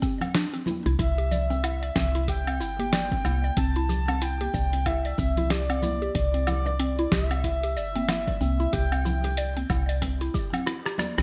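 Light reverb and a bright, 1980s-style digital sheen frame this short excerpt of organic downtempo, which feels peaceful and earthy with a gentle swing. A dusty, sampler-style drum kit sits up front with a fat, gritty snare, hi-hat, rim click, cabasa and woodblock, while a deep, tape-warm electronic kick and soft-handed bongos and congas stay in the background. A mallet-like synth pluck with a woody, percussive tone plays arpeggios over a Cadd9 chord, coloured by chorus, phaser and digital delay. A round, dark FM bass enters at 0.9 seconds with sidechain pumping, and a breathy, flute-like synth lead joins at 1.0 seconds, its sustained line shimmering with vibrato, tremolo, lush chorus and delay. A drum fill at 10.7 seconds closes the passage.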